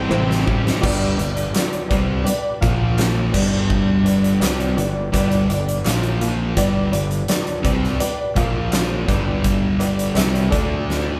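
Classic rock at 84 BPM in a straight 4/4, this brief excerpt has a driving, swaggering mood, with a dark, double-tracked distorted guitar riff and a huge arena drum kit with a fat snare and punchy kick sitting up front. Underneath, a round fuzz bass and a detuned, jangly honky-tonk upright piano fill out the groove over chords moving between G and Bb5, while very quiet, crisp group handclaps add texture. A bright steel-string acoustic guitar is heard only for the first 0.8 seconds, and drum fills open the passage and return at 10.9 seconds, all captured as a band playing live in one room with moderate studio reverb.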